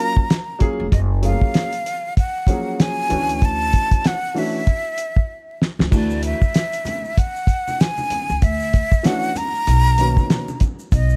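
Vinyl crackle and small-room ambience frame this relaxed jazz-hop excerpt at 96 BPM, where a cloth-damped, thuddy drum kit with a fat snare and dark cymbals sits up front, swung on the sixteenths beside a woody pizzicato upright bass. A breathy flute carries the expressive melody with vibrato and a soft attack over a smooth, vintage upright piano moving through major-ninth chords. After a drum fill, distant maracas and congas with ringing, hard-handed tones join at 5.9 seconds.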